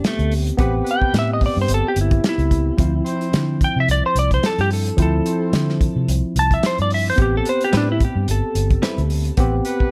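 A straight-eighth 4/4 groove at 109 BPM with a light sixteenth-note swing drives this mournful, brooding soul blues excerpt in A minor, where a dark, clean lap steel guitar carries the slide solo up front with volume swells over a tight, rolled-off soul drum kit pumping in a snug booth, a round, punchy foam-muted electric bass, bright tine electric piano chords moving from Am9 to Dm9 and back, a loose horn section that enters at 0.6 seconds holding smooth, lightly vibrato-tinged sustained chords, and a brief, chorus-laden, compressed clean electric guitar playing stabs from 7.7 seconds.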